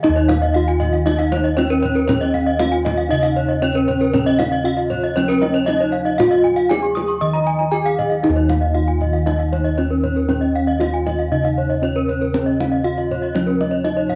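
Round, beating bossed gongs sit up front, carrying the bass line in this brilliant, shimmering excerpt of Balinese gamelan in Eb slendro at 117 BPM in a straight 4/4. Above them a bronze metallophone struck with a wooden mallet rings out the melody, its paired tuning producing shimmering beats. Two bright, horn-mallet metallophones spin arpeggios, the second entering at 0.3 s with a close-miked, dry, full tone. Both carry a cassette-tape colour, while a tight, band-limited kendang keeps time underneath. The home cassette recording adds a moderate spring reverb.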